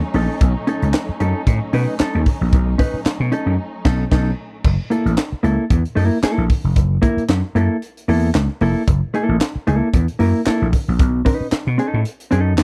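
Dry and close, this funky, energetic fragment of a longer piece puts a bright, growly slap bass and a punchy fusion drum kit with handclaps and a high-tuned snare up front beside a dark, clean, fingered electric guitar, while a bowed string section with vibrato and portamento holds chords over the opening B9 until a band accent at 3.6 seconds leads into an F#7#9 passage from 4.6 seconds.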